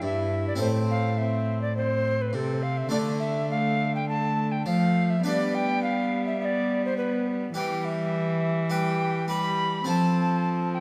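Four players begin together: an alto recorder carries the melody over harpsichord, viola and cello in a courtly, stately Renaissance-style consort dance at 104 BPM in a straight 4/4. The recorder sits up front with an airy, wooden tone, touched by vibrato and the chiff of tongued notes, and its line is shaped expressively between A4 and B5. The harpsichord, also up front, is a full, plucked Flemish-style instrument with two sets of strings, filling out the harmony from G2 to B4. A single bowed viola with gut strings adds a reedy middle voice, while one closely heard cello supplies a rich, nasal bass in period style. The harmony moves from Em through Am, Dm and G, back to Em, and reaches F at 9.9 seconds, all bathed in a wet scoring-stage reverb in this 10.8-second excerpt cut from a longer piece.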